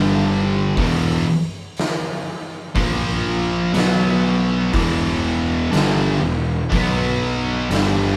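A slow, straight 4/4 pulse at 61 BPM drives this hypnotic, ominous stoner and doom metal excerpt in E minor, with an oversized, low-tuned drum kit arriving at 0.8 s with a fat snare, punchy kick and hi-hat, its sound dark, saturated and rolled-off at the top in a stone-like room. A bright, double-tracked overdriven electric guitar carries the riff from the start, backed in the background by two thick fuzz guitars, one dark and one warmer, while a growly, fuzz-laden picked bass rumbles beneath. The band plays live together in one room with moderate reverb, moving through heavy power chords from G5 and E5 to A#5 and B5, then reaching E minor at 4.7 s before returning to B5 at 6.7 s.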